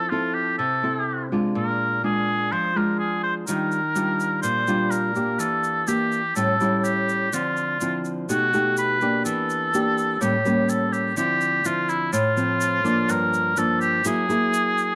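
A straight 4/4 bossa nova groove at 125 BPM in D minor carries this melancholic, smooth piece, where an up-front, clear oboe with vintage vibrato sings a classical-style second line over a warm, thumb-plucked nylon-string guitar accompaniment, a grainy, bright tube shaker joins close and dry at 3.5 s, and moderate spring reverb with small room ambience wraps the extended chords that move from Fmaj7 toward a closing F#9.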